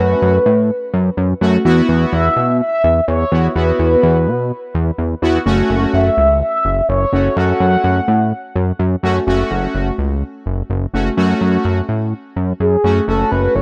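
Melancholic yet driving, this synth-pop passage is a short cut from a longer piece, moving at a straight, steady pulse in four. A fat, detuned analog bass sits up front with a thick, plucky filtered edge, holding the low end from start to finish. Bold, brassy analog synth brass carries the accompaniment throughout, its chorused sawtooth tone opened by a filter sweep. Over them a mellow, horn-like synth lead sings the melody with a round, soft-attacked tone, vibrato, and chorus, phaser and analog delay. The lead drops out at 8.8 seconds, the passage moves into a new section at 9.3, and the lead returns briefly at 12.6, with the chords moving from F#m to Esus2 and back. A light reverb and a rough home-demo mix give the sound an unpolished, close feel.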